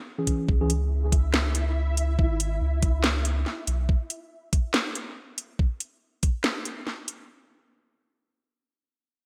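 Heavy and cavernous, this deep dubstep excerpt moves at 141 BPM in C# minor with a half-time feel and a 61% swing on the sixteenths, resting on a single C# minor chord before the harmony drops away at 7.3 seconds. A mellow, clean tine electric piano opens with brief stabs between 0.2 and 0.7 seconds, dulled by a low-pass filter and trailed by dub echo. An electronic kick drum, knocking and tape-warm, sits up front until 6.3 seconds, joined by a layered garage kit whose cracking snare and metallic hats are shaped by gated reverb. A soft, round dub sub bass with a fast attack and sustained tone anchors the low end between G#1 and C#2. Above it, a flickering, grainy granular texture with a slow attack, long release, detuned character, reverb and ensemble chorus hovers quietly in the background, all set within a light room and a bright 1980s-style digital production.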